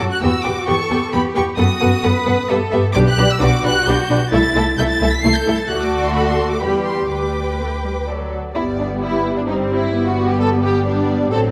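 Lively and graceful, this quick classical-period string orchestra piece in triple time sets a lush violin melody over a smooth second violin line and intense viola accompaniment, while expressive cellos with portamento and up-front, woody double basses carry the bass, all bowed with vibrato in a concert hall reverb, before a new section arrives at 8.6 seconds.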